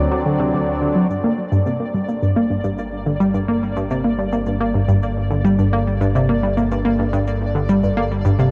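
This mysterious, hypnotic stretch of sequencer-driven space music in G minor opens at 107 BPM with a round analog pluck riff up front, set over a bright, airy pad of detuned sustained chords in the background, an evolving pulse-width-modulated analog drone in the bass, and a pulsing, tempo-synced gated texture holding a single high D5. At 1.1 s the harmony moves from D7 to Gmadd9 as very quiet, tape-warm electronic bongos and shaker enter. The pluck carries chorus and delay, and the whole piece sits in a huge ambient reverb with the worn, warbling pitch drift of old cassette tape.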